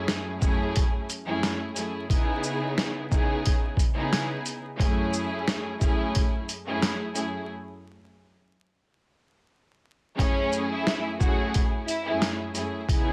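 A swung 16th-note boom-bap groove drives this reflective, gritty hip-hop excerpt, its compressed, pitched-down sampler kit of thumpy kick, medium-tuned snare, hi-hat and shaker sitting up front with a tape-warm, small-room grit. Alongside it, a close, intimate string section bows lush sul tasto chords with vibrato and a smooth top, filtered and bathed in plate reverb. At 10.2 seconds a rich violin section takes the melody with soft attacks and expressive vibrato, adding delay to the plate reverb, while vinyl crackle and light reverb hang over the whole texture.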